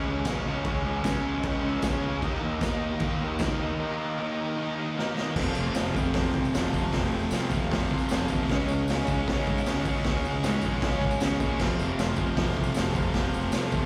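Garage rock with a menacing, raw edge at 154 BPM in F minor, heard as a live club gig through the PA, where a double-tracked fuzz guitar riff sits up front over a dark, round fuzz bass, a gritty drum kit with a high-tuned snare and boomy kick, a buzzy, heavily vibratoed overdriven organ holding chords in the background with short fills at 1.1 and 7.7 seconds, and a jingly tambourine, with a drum fill at 5.0 seconds leading into the Fm section.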